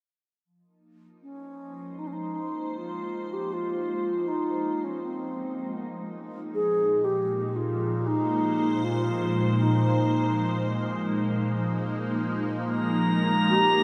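Ambient in free time, melancholic and reflective, this passage cut from a longer piece sets a mellow, hollow alto flute melody with tape echo, entering at 1.2 s, over an evolving wavetable pad of sustained, morphing chords with ensemble chorus, phaser and built-in reverb, moving from Bbsus2 through Abadd9/Bb to Bbm, both fading in under a huge wet reverb, before a glassy texture of drifting overtones appears at 12.9 s.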